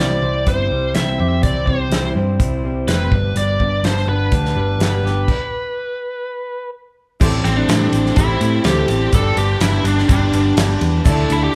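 This hopeful, open-road slice of folk rock and heartland rock at 125 BPM opens with the whole band playing live in one room: a biting, overdriven lead guitar carries the melody up front over a full-bodied dreadnought acoustic picked in the background with audible finger squeak, a lo-fi, slightly broken-up electric riff through a small old amp with spring reverb, a dark, round hollow-body bass, and a loose indie kit with a fat snare and tight kick. After a stop at 5.3 s, the band moves from the C and G changes onto Am7 at 7.2 s, where a clear, woody, slightly detuned upright piano, a very quiet reedy tonewheel organ with key click and rotary speaker, and a grainy tube shaker join. Everything sits in a moderate large-studio reverb.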